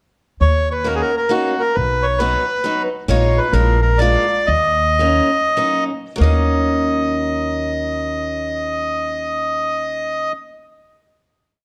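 A reedy, mid-forward bandoneon sits up front with a motif-based melody in sentence-like phrases, leading this short, nostalgic and bittersweet musette waltz in Eb minor, in 3/4 with a rubato feel that moves between 92 and 137 BPM. A thumpy, woody pizzicato upright bass with steel strings, also up front, plays root and fifth on the main beats, while a boxy, picked, ladder-braced acoustic guitar enters at 0.8 s with close-voiced backbeat chords. The tempo slows from 3.1 s into a final chord held from 6.2 s, in a dark, warm production with moderate recital hall reverb.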